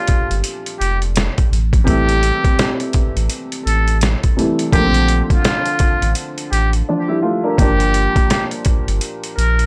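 A dry, gritty hardware recording with little reverb frames this tough, moody boom-bap hip-hop excerpt in G dorian, cut from a longer piece and tuned slightly flat to A4 = 437 Hz. At 84 BPM in 4/4 with a 60% swing on the sixteenths, a compressed, pitched-down sampler-style kit sits up front with a thumpy kick, a medium-tuned snare and hi-hat, carrying the character of a re-recording in a small room. A deep, round sine sub bass with tube saturation arrives at 0.3 s, its fast attack giving way to sustained low notes. A worn, woody upright piano, slightly detuned and softened by cassette tape and filtering, plays the accompaniment through Gm7, Am7 and Bbmaj7 before returning to Gm7. Over it, a trumpet with a metal mute sings a breathy, buzzy, whispered jazz-style solo, thin and intimate with a soft attack and a trail of tape echo. The drums fall away from 6.9 to 7.6 seconds, briefly leaving the horn, piano and bass exposed.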